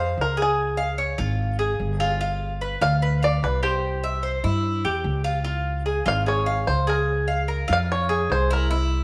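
A moderate echo-chamber reverb lends this short cut from a longer piece a roomy sheen, with all three acoustic instruments sitting up front. It is danceable, sultry Latin music in the Cuban son and guajira vein, moving in a straight 4/4. The bluegrass banjo, played with fingerpicks, carries the melody with a twangy, percussive edge, dropping out at 8.7 seconds. The Cuban tres spins bright, metallic arpeggios on its doubled strings, some of them octave-doubled, while the upright bass anchors the low end with dark, woody, thumpy pizzicato on gut strings. The harmony moves from Fm through Db, G7 and C before returning to Db and settling on Bbm7/Db.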